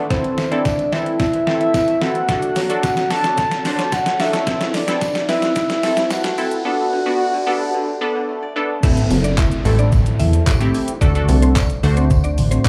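A dark, round synth lead layered in octaves sits up front in this bittersweet, energetic dance-pop excerpt in A dorian at 110 BPM, carrying the melody with chorus, phaser, vibrato and echo until 8.2 seconds. Beneath it, a bright, detuned polysynth comp pumps against the beat, while a crisp, fingerpicked kora rings out arpeggios in the background until 10.7 seconds, and a riser and downlifter sweep through the whole excerpt. A detuned, overdriven 8-bit drum machine with a thumpy kick, medium-tuned snare, handclaps, hi-hat, shaker and crash drives the opening build, which features a long drum fill, and a very quiet, jingly tambourine rattles from a distance. At 8.8 seconds the drop arrives, bringing in a punchy, funky analog bass and a woody, mellow mallet-like FM pluck that takes over the melodic role. The harmony moves between Am, D and Bm7, and the whole excerpt sounds like a live gig heard through a club PA, with light reverb and a thinned low end.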